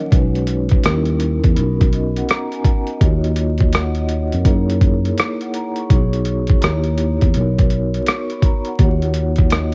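Melancholic and reflective, this lo-fi hip hop excerpt in a swung 4/4 sets a mellow, ringing soft-mallet vibraphone with medium motor vibrato on cassette tape against a worn, slightly out-of-tune tine electric piano carrying the bass up front and a gritty, overdriven boom bap sampler-style kit of thumpy kick, hi-hat and rim click, all wrapped in a home-recorded cassette ambience with vinyl crackle as rich chords like Bmaj13, Eb7b9 and Ebm9 drift by.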